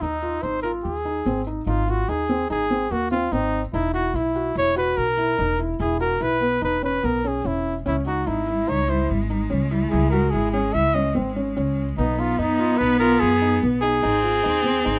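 A clear, up-front flugelhorn sings a scooped, vibrato-laden pop-style melody over felt-muted upright piano arpeggios with audible action noise and a woody pizzicato upright bass, joined at 7.8 seconds by a focused, boxy bowed cello line, giving this playful, restless contemporary chamber piece in 5/4 an intimate, closely detailed sound with light reverb.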